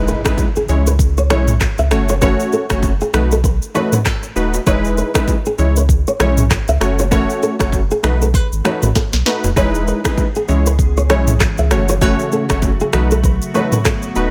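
Romantic and joyful afrobeats at 98 BPM with a swung sixteenth feel, opening on a very quiet electronic impact as round, detuned sawtooth analog keys with chorus and filter sweep, a thick saturated sub bass and a produced afro-pop kit (deep kick, sharp snare, finger snaps, handclaps, rim clicks, shaker and toms, with a fill at 9.0 s) cycle through Emaj7, C#m, F#m and B7, while a thumb-plucked flamenco guitar riff with finger squeak and digital delay plays alongside ringing, band-limited bongos and congas, and a glassy, ethereal FM pad drifts in at 10.3 s in the background, all set in a digital ambience.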